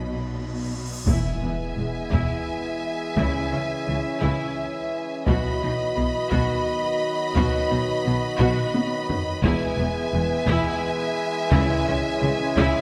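Set in a moderate scoring-stage reverb, this dramatic, relentless epic orchestral film-score passage in 6/8 at 57 BPM opens with a lush violin melody over a smooth second violin line, rich violas, mellow French horns, and woody double basses with background cellos. A huge, bright cymbal swell rises from 0.5 seconds into an impact at 1.1 seconds, which brings in hard-stick taiko drums, mellow background woodwinds, distant roomy trombones and, at 3.2 seconds, very quiet close and dry calf-head timpani, moving through B, E and C#m.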